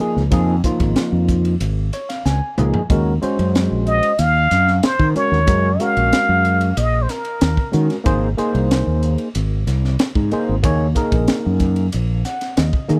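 A small, close room sound frames this funky, intense excerpt of electric jazz fusion at 93 BPM in Eb dorian, where a gritty, barky overdriven tine electric piano through a combo amp and a dark, round fretless electric bass, both treated with analog chorus, move through Db, Ebm9 and Abadd9, a crisp acoustic fusion drum kit with a high-tuned snare and tight kick enters at 0.2 s, and a plunger-muted trumpet takes a jazz solo with wah-wah, vibrato and scooped notes from 3.9 to 7.7 s, with short electric piano and drum fills along the way.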